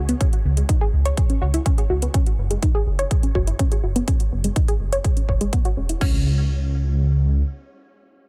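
A deep, rumbling detuned saw bass sits up front with sidechain pumping in this expansive, emotional progressive house excerpt at 124 BPM, joined by lush unison pluck arpeggios colored by cassette tape and delay, with filter sweeps on both bass and pluck until 6.0 seconds, while a punchy layered electronic kick and an overdriven house kit with metallic hats drive the straight 4/4 in a dry mix, the bass carrying on alone to 7.4 seconds.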